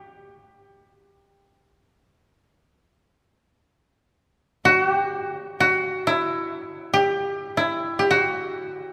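Japanese traditional chamber music in free time, still and austere, presented by a solo koto that is heard from 0.0 to 8.9 s in this brief fragment cut from a longer piece. Plucked with fingerpicks and tuned to A4 = 445 Hz, the acoustic koto sits up front with a mellow, woody tone, keeping to a narrow span from E4 to G4. Its close, dry attack is set within a moderate church reverb that lingers for about 3.0 s.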